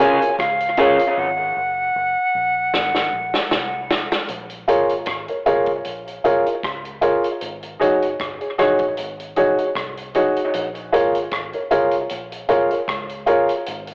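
A lightly swung dub reggae groove in 4/4 rides on a vintage drum kit with a punchy kick, rim click, hi-hat, snare and a rolled-off top, while a dark, round, foam-muted bass with tube saturation sits low beneath it. A woody, boxy upright piano plays up-front stabs, a slightly broken-up guitar with vibrato sounds only briefly at the start, and a reedy, airy flute carries the melody until 3.9 s; these three share cassette tape echo. A break begins at 1.2 s, and a drum fill leads into the next section at 4.3 s, with the small-room, home-cassette telephone sound giving this spacious, hypnotic fragment its character.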